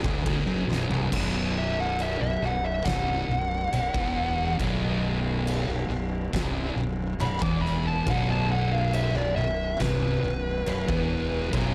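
Stoner and doom metal with a sludgy, brooding mood, cut from a longer piece: two thick fuzz guitars grind a low, picked riff in the background, one warm and one dark, over a growly fingered bass driven with overdrive and tube saturation. An oversized low-tuned acoustic drum kit sounds boomy and gritty in a pumping big room, with a fat snare, kick, toms, ride and crash, and it plays a fill at 0.7 seconds. From 1.6 seconds a compressed, up-front fuzz lead guitar takes a high solo coloured by slapback echo, all set in a light small-room reverb.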